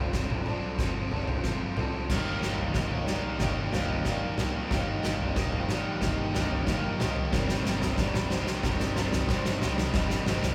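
An oversized, low-tuned drum kit sits up front in this cinematic, cathartic post-rock passage at 92 BPM in 4/4, rolling through a long fill across crash cymbal, toms, a boomy kick and a medium-tuned snare, its dark cymbals and saturated, gritty sound blooming in a pumping big room. A crunchy overdriven guitar picks a riff from the start, and a second one, set further back, joins with its own riff at 2.1 s as the harmony moves from F/G to Eb/G. Beneath them a round, hollow-body fingered bass holds a dark, amped G1 in the background. Very quietly, a slightly broken-up, lo-fi guitar through a small old amp and a felt-muted upright piano, mellow and intimate, weave arpeggios, while a breathy, detuned pad with chorus sustains bright chords overhead. The band plays live in one room with moderate large studio reverb, and the whole section builds as a fragment cut from a longer piece.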